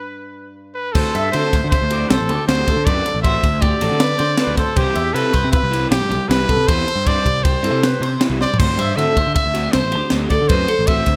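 A bright trumpet sings its melody with vibrato and a smooth top over a single low twangy guitar note on a G chord, a brief stop before the band arrives at about 1 second. This short cut from a longer math rock and midwest emo piece moves at 157 BPM in 5/4 with a straight feel, and its mood is wistful yet bright. A crisp fusion drum kit with a high-tuned snare, tight kick, ride and crash enters under gated reverb, while a clean, picked electric guitar spins twangy arpeggios through analog chorus and digital delay. A raw, double-tracked garage guitar plays a lo-fi overdriven riff in the background, and a dark, round, punchy fuzz bass anchors the low end as the harmony shifts from D7sus4 to Cmaj7 and on to D9sus4. A drum fill lands at 8.4 seconds, and the airy room and polished 1980s-style digital sheen keep the trumpet up front throughout.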